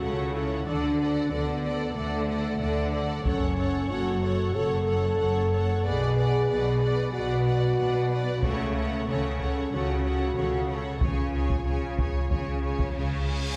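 A heroic, dark orchestral film-score passage, cut from a longer piece, opens with lush bowed strings: violins with vibrato carry the melody and a soft-attack second line over intense violas, smooth cellos and expressive double basses with portamento, while a sombre, distant French horn section holds sustained chords. Close taiko drums played with hard sticks strike at 3.3 s and return from 8.4 s, and a huge reverse cymbal arrives at 12.8 s, all set back in a wet, reverberant scoring-stage space.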